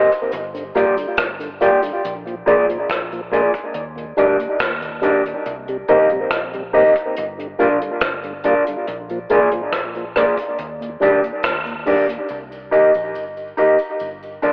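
Hypnotic and heavy, this dub reggae excerpt sets an up-front, clean electric guitar with tape echo over a round, foam-muted fingered bass, a distant brush kit of hi-hat, tight kick and rim click, and a dark tonewheel organ with chorus vibrato and slow rotary speaker, while a faint cabasa sounds only until 2.0 seconds and returns at 12.3 seconds, all steeped in wet spring reverb with a telephone-like tone over a Gm7, Bb7, Ebmaj7, Cm7 cycle.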